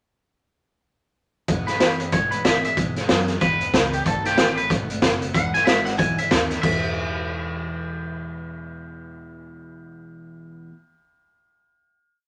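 A rowdy, rollicking rockabilly piece in E major at 186 BPM opens at 1.5 s with a gritty, saturated garage drum kit pushing a shuffle groove up front, a woody upright bass walking on plucked gut strings, and a bright steel-string acoustic guitar strumming eighths with open chord shapes in the background. A clean, twangy electric guitar joins at 1.7 s with a lick-based theme that returns over a swung E to B7 and back to E progression. The drums drop out at 6.7 s, and the guitars and bass carry on through the final chord in a moderate studio reverb.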